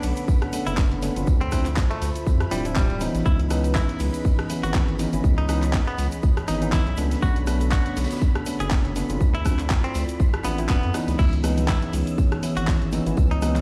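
A punchy, up-front electronic kick enters at 0.3 s to drive this late-night deep house excerpt at 121 BPM in a swung 4/4, alongside a tape-warm deep house drum kit with crash, handclaps, hi-hat and rim click, a very quiet brush kit and a grainy egg shaker that play from the start, with soft-handed congas arriving at 11.4 s. Meanwhile a round, sidechain-pumped analog bass, a moody chorused analog pad, a silky string machine, a worn, slightly out-of-tune tine electric piano playing overdriven, delayed stabs and a twangy clean electric guitar melody with 12-bit sampler grit move through Bm9, Dm9 and C#m9 in C# phrygian, all heard through a bare stone room with vinyl crackle.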